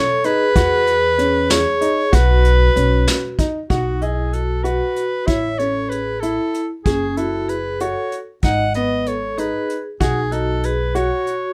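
A smooth, lightly vibratoed soprano saxophone carries the melody up front in this driving, intricate progressive instrumental in 5/8, joined by a ringing, metallic vibraphone second line, clear, worn baby grand piano arpeggios with long sustain, a natural brush drum kit with a punchy kick, and a woody, growly pizzicato upright bass that enters at 0.6 seconds, all captured close and detailed with light reverb.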